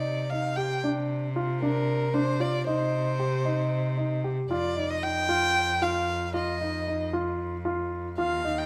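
Hypnotic and urgent, this short excerpt of contemporary chamber music in an uneven 7/8 pulse sets a dark, nasal violin melody with vibrato and portamento over mellow baby grand piano arpeggios and a clear, biting bowed cello bass line, all three up front in a moderate recital hall reverb as the harmony moves from C minor to Ebadd9 over F at 4.5 seconds.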